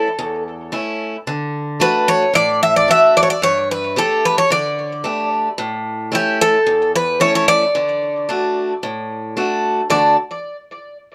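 A Greek bouzouki leads up front, its metallic, double-strung tone with some octave-doubled strings carrying the melody through a tape echo in this warm, sunny Greek folk piece, cut from a longer performance. A boxy, picked acoustic archtop guitar sits close beside it in accompaniment, both parts playing from the start until 10.2 seconds at a straight 111 BPM in D major, moving through A, D and Gsus2. Close, detailed microphones catch the pair in a moderate studio ambience.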